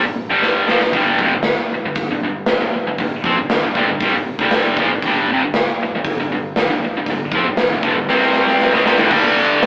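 A straight 4/4 hard rock pulse at 118 BPM drives this menacing excerpt, where a bright, double-tracked overdriven guitar riff sits up front over G5 and C5 power chords, a dark, round, overdriven picked bass rumbles in the background, and a punchy, airy drum kit with bright cymbals enters at 0.4 seconds with a fill and returns with another at 8.1 seconds, all heard through a rough rehearsal-room sound with tube saturation, an AM-radio tint and moderate studio reverb.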